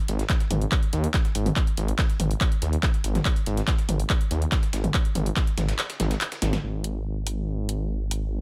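Driving peak-time techno at 142 BPM in a straight 4/4, this short excerpt cut from a longer piece feels driving and intense. A thick, menacing detuned saw bass sits up front in a low register from G#1 to D#2, its beating sawtooth tone sustained and fast in attack, pumping under sidechain compression. A punchy, tape-warm electronic kick drives the groove from 0.3 s until 5.5 s, while a layered techno kit supplies handclaps, hi-hats, a punchy snare and toms, with sidechain pumping on the hats and toms and a small-room character. Beneath it, a very quiet, gritty sampler-style kit adds a fat, compressed snare and hi-hat until 6.6 s. A drum fill at 6.4 s leads into a new section at 6.6 s, where the bass and techno kit carry on inside a digital ambience.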